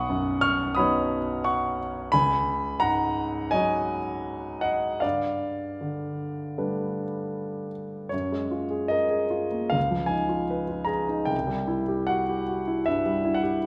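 Impressionist classical solo piano, hazy and dreamy, drifts with rubato in 4/4 at roughly 73-89 BPM, tuned to A4 = 442 Hz and cut from a longer piece. A clear, intimate concert grand sits up front, with deep bass, long sustain and audible action noise, moving through lush colors like Cbadd9, Db11 and G9 before turning at 8.1 s to a second passage that passes through Gbmaj9 and Db9 and settles on C. A wet recital hall reverb surrounds the piano.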